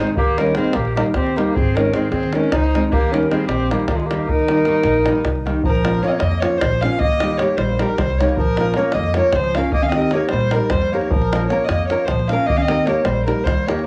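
This Balkan folk piece in the spirit of a Balkan wedding band is a virtuosic, wild fragment cut from a longer performance, racing along at 307 BPM in eighths within a straight 7/8 metre in Eb mixolydian. A single bowed fiddle leads up front, its dark, woody tone carrying light vibrato and colored by a cassette-tape grain and plate reverb. A bright clarinet in a classical style weaves a second line beneath it, while a warm nylon-string guitar supplies fingerpicked accompaniment and an upright bass plays pizzicato on steel strings with a dark, woody tone. A tight davul drives the percussion, heard in a small room. The opening section cycles between Eb and Ab before the second section arrives at 5.7 s, alternating between Bbm and Eb, all captured as a homespun cassette recording in a snug booth.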